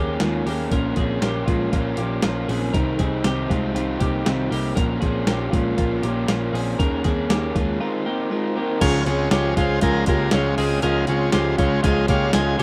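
A straight 4/4 pulse of gritty, overdriven boom bap sampler-style drums with a thumpy kick drives this bittersweet, wistful jangly indie pop excerpt from a longer piece, where a raw, overdriven garage guitar sits up front beside bright, twangy twelve-string electric guitar arpeggios and a dark, round, foam-muted picked bass, until a buzzy combo organ with light vibrato enters at 8.8 seconds and adds a fill at 11.8 seconds, all in a dry, rough home demo mix.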